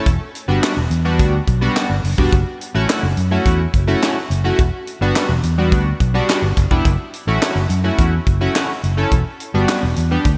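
Early-eighties boogie funk at 106 BPM in a straight 4/4, this danceable, funky excerpt from a longer piece sits in E dorian and sways between Em9 and F#m7 chords. A glossy, chorused polysynth with a filter sweep carries the accompaniment, while a punchy, amped fingered electric bass anchors the low end and a tight funk drum kit with handclaps, hi-hat, a high-tuned snare and a tight kick rides up front with gated reverb. The bright digital production sits in a light studio reverb.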